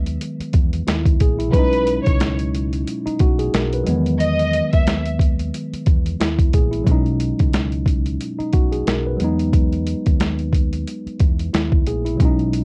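Up front and lush, a bowed violin section carries a brief, expressive melody with warm vibrato from 1.5 to 5.0 seconds, its tone filtered and softened by cassette tape. This confident, nostalgic boom-bap hip-hop excerpt moves at 90 BPM in 4/4 with a swung sixteenth-note feel, shifting between Emaj7 and B69 chords. A worn, slightly out-of-tune tine electric piano sits clean and direct in the foreground, also filtered and tape-coloured. Underneath, a dark, round fingered electric bass holds the low end throughout. The sampler-style drum kit is compressed, pitched down and gritty, with a thumpy kick, a medium-tuned snare and hi-hat placed prominently. The whole piece has a dry, home-recorded cassette character.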